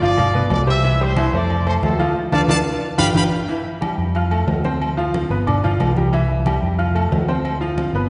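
Sunny and joyful, this brief salsa clip moves at a brisk 182 BPM in a straight 4/4, cut from a longer piece. A mellow trumpet section with light vibrato carries the melody in a punchy pop style, dropping out at 3.2 seconds, during a band accent that runs from 2.2 to 3.5 seconds. Up front, a bright baby grand piano supplies the accompaniment with a brilliant, worn, intimate tone, short sustain and audible action noise, while a fingered electric bass plays a dark, round, amped line underneath. Low-tuned congas with a thin skin sit close but in the background, and ringing agogo bells and timbales sound distant, as if in a large room. The harmony moves through chords such as G7, Cadd9, F and Dm before settling toward C and Dm7, all bathed in a lush concert-hall reverb with a soft, rolled-off top.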